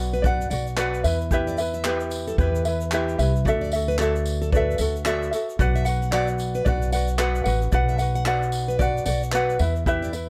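A gently swung 16th-note groove at 112 BPM in 4/4 drives this wistful, tender acoustic pop excerpt in E minor, which moves through Bm, Em, Dadd9 and back over about 10.3 seconds. Up front sit a bright, light fingerpicked ukulele and a woody pizzicato upright bass on steel strings, while a picked dreadnought acoustic guitar with old strings plays warm arpeggios from 0.1 seconds. A distant, roomy studio drum kit played with bundle sticks adds a punchy kick, handclaps and tambourine, and a grainy, band-limited vintage egg shaker sits in the background, with little reverb across the mix.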